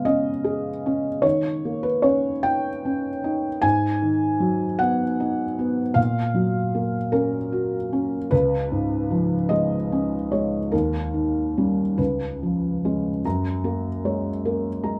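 A felt-muted upright piano sits up front in a moderate studio reverb, its intimate, mellow tone carrying audible action noise across this 15-second fragment of a longer neoclassical minimalist piece. Playing solo in a rubato 6/8 at about 50 BPM and spanning C#2 to A#5, it moves through C#7, D#7, G#m7 and F#maj7/A# before settling onto F#add9 at 13.2 s. The mood is hopeful and tender.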